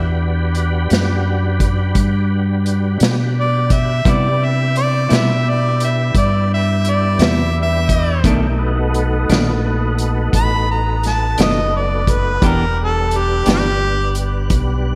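A smooth tonewheel organ, its slow rotary speaker and chorus vibrato turning over sustained chords, opens this smoky, mournful slow blues in E minor alongside a dark, round fingered bass, with an acoustic vintage kit of punchy kick, medium-tuned snare and hi-hat joining at a 57 BPM 12/8 pace. At 3.4 seconds an up-front overdriven harmonica takes the jazz-style solo with light vibrato and scooped notes over a smooth top, while a clean picked electric guitar with tremolo sits in the background from 4.0 seconds as the chords move from Em7 through Cmaj7 and B7#9. The dreamy mix is soaked in a lush hall reverb, giving this excerpt from a longer piece a hazy, late-night glow.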